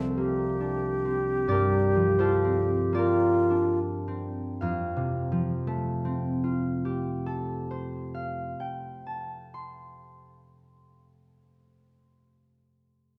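Luminous and dreamy, this impressionist classical duo in a rubato 4/4 opens with a concert harp's ringing, fingerpicked accompaniment beneath a concert flute whose pure, straight tone and crisp attack carry a brief melody from 0.2 to 3.8 s, easing through a slowdown before the harp sustains alone until 12.2 s, all within a dark production and a wet recital-hall reverb in this excerpt from a longer piece.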